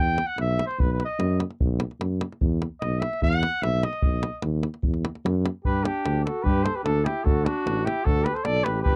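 A trumpet with light vibrato opens this restless, virtuosic Balkan brass band excerpt, soloing in a classical style over a mellow, soft-attacked tuba bass. A tight, dry davul joins at 0.2 s, driving the straight 2/4 pulse at 149 BPM. The tune sits in E harmonic minor until 5.6 s, where it shifts to G major and a roomy flugelhorn enters with a second line, while the close 1970s-style studio sound, with little reverb, keeps the trumpet, tuba and drum up front.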